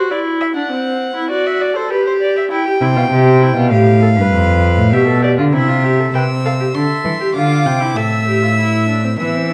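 In a straight, stately yet lively 3/4 at 99 BPM, this baroque-style fugue for string quartet opens in C major, with a bowed violin on the second line sitting close alongside a viola accompaniment marked by light vibrato. A gut-string cello takes the bass from 2.8 s, and at 6.1 s the music turns to A minor as a nasal, high violin enters with the melody. The period-style playing has a reedy character throughout, set in a wet recital-hall reverb with a dark, warm production, and the passage is cut from a longer piece.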